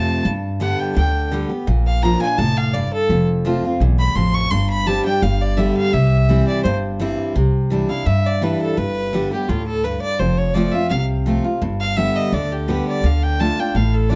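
A straight 4/4 pulse at 169 BPM drives this rustic, virtuosic bluegrass excerpt in C major, where a biting, earthy bowed fiddle sits close and up front with an airy bow and takes a solo through 7.4 seconds, a bright, full-bodied picked dreadnought acoustic guitar with fresh strings and audible finger squeak picks through the chord changes up front, and a woody, thumpy pizzicato upright bass anchors the low end, all within a dark production with light reverb.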